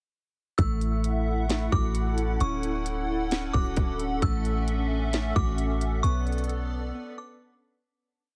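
Atmospheric cloud-rap hip hop at 132 BPM in a half-time 4/4 feel, this short, complete piece in A major floats with a blissful, dreamy mood over chords moving from A6 to Dmaj7 and back before settling on Bm7. A trap drum kit sits up front with a hard-clipped kick, sharp snare and crisp hats playing a sparse beat with fast hi-hat rolls, roughened by vintage 12-bit sampler grit, while a deep, boomy 808-style bass holds long sub-bass notes that follow the kick. A delicate, tinkling FM synth bell loops a sparse melody high up, treated with chorus, a low-pass filter and tape echo, alongside a dark, clean electric guitar repeating a fingered eighth-note arpeggio through the same filtering and echo. A hollow, flute-like pad warbles underneath with ensemble chorus and sidechain pumping, and from 1.4 seconds a reversed, granular swelling texture drifts in the background with its own reverb. The drums drop out at 6.6 seconds and the bass at 6.9 seconds, leaving the remaining parts to carry a brief break as the piece fades out from 6.0 seconds, all within a dry, heavily compressed, radio-like sound.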